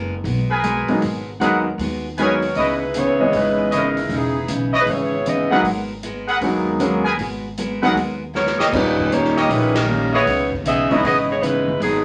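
Wet club reverb surrounds this sultry, swinging big band jazz excerpt in G# minor at 156 BPM, where a mellow saxophone section with vibrato enters on the melody at 2.2 seconds, a distant, roomy trumpet section punches stabs, a clear grand piano with long sustain and a full-bodied picked steel-string acoustic guitar provide accompaniment, a woody, gut-strung upright bass holds the low end, and a big-band kit with a boomy kick plays a fill at 8.3 seconds ahead of a band accent at 9.7 seconds over chords moving from G#m9 through C#m9 and D#7.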